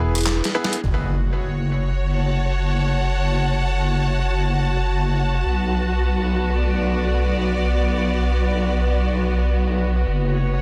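A dense, heavily limited modern master with light reverb opens this swaggering, playful glitch hop excerpt in F# minor, moving at 104 BPM in 4/4 with a 62% swing on the 16ths. A bright grand piano stabs briefly over an E chord before 0.7 seconds, its polished tone roughened by vintage 12-bit sampler grit and delay, while a very quiet, dark analog pad of detuned saw and square waves sustains moody chords throughout. The boom bap sampler-style drum kit of handclaps, hi-hat, rim click and a medium-tuned snare enters at 0.2 seconds and plays a fill from 0.3 to 0.8 seconds. It sounds gritty and compressed, with low-pass filtering on the hats, snare and the large room it was re-recorded in. At 0.8 seconds a heavy, saturated wobble bass arrives up front with chorus and overdrive, joined by a lush, bowed string section and an electronic impact sitting in the background until 3.1 seconds. The harmony settles on F#m7, moves to Bm7 at 5.5 seconds, and returns to F#m7 near the end.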